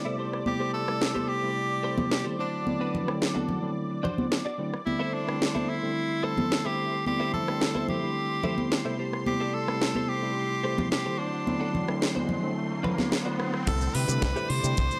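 An edgy tenor saxophone with light vibrato and tape echo carries the melody up front through this groovy, feel-good nu-disco excerpt, entering at 0.5 seconds. Beneath it, a worn, slightly out-of-tune tine electric piano pumps against the sidechain, while a clean, compressed electric guitar plays a picked riff through ensemble chorus and a low-pass filter, and a lush, detuned unison pad holds bright sustained chords in the background as a filter sweep moves across it. A house drum kit with a cracking snare, metallic hats, rim clicks, shaker and crash sits up front, joined by hard-handed congas with a bright acoustic snap. A riser builds in the background from 11.5 seconds into a drop at 13.7 seconds, where a round, envelope-filtered fingered bass and a tight, natural kick drum arrive. The sound is dry and gritty, with light small-room reverb and a hardware edge, as the chords cycle through Am7, D7 and C6.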